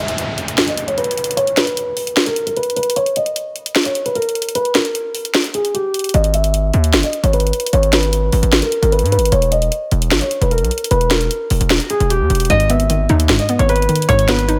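A half-time trap beat at 151 BPM in G# harmonic minor, with a sharp snare and bright hi-hats up front, drives this menacing, brooding hip hop fragment, where a soft, felt-muted upright piano with audible action noise carries the melody through a filter sweep over a brief electronic downlifter, a distorted, saturated 808-style bass lands heavy at 6.1 seconds, and a hollow, bouncy square pluck with chorus joins at 12.5 seconds, inside a light digital ambience.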